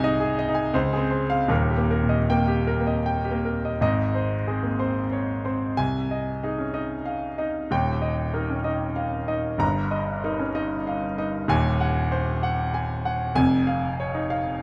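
Romantic classical character piece for solo piano in a rubato 3/4, this lyrical fragment from a longer work features a clear, intimate baby grand heard up front with audible action noise, its harmonies drifting toward a new key at 11.5 seconds while close, detailed microphones catch the instrument inside a moderate recital-hall reverb.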